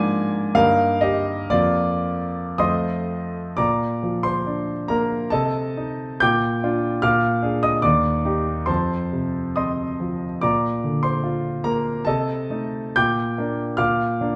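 Heard from further back in a large studio bathed in wet reverb, this brief cut from a longer romantic character piece for solo piano presents a clear, smooth concert grand with deep bass and a vintage, up-front tone, unfolding a lyrical, hopeful idea in Bb major at a rubato 54-76 BPM in 2/4, its harmony arriving on Bb as a new passage opens at 3.6 seconds, touching a diminished chord over C, and coming back to Bb at 13.0 seconds.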